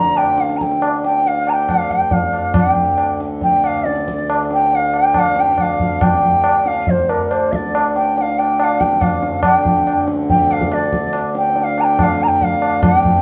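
Hindustani classical music in raga malkauns on D, introspective and solemn, at 140 BPM in a straight 4/4 that speeds up across this short excerpt from a longer piece, with a pure, mellow, soft-attack bansuri carrying the melody up front in plate reverb with vibrato, a reedy pedal harmonium drone breathing beneath it, and low-tuned tabla with a short ring entering at 0.2 seconds, all set in a moderate studio room, as the piece moves into a new section at 9.4 seconds.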